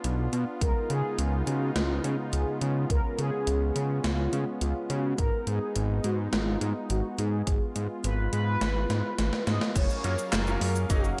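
This romantic, dreamy synthwave excerpt in F# major, at 105 BPM, opens with a smooth, detuned pad pumping with sidechain and chorus, a fat sawtooth bass pumping underneath, and a gated 80s drum machine with gated-reverb snare, handclaps, hi-hat, cabasa and crash. At 0.6 seconds a punchy, up-front electronic kick arrives alongside a round, brassy synth lead with vibrato, chorus and digital delay, moving over chords from C#7 to G#m. During a drum fill the kick drops out at 9.2 seconds, and the harmony settles on F#maj7 as a bright grand piano adds short stabs from 10.0 seconds.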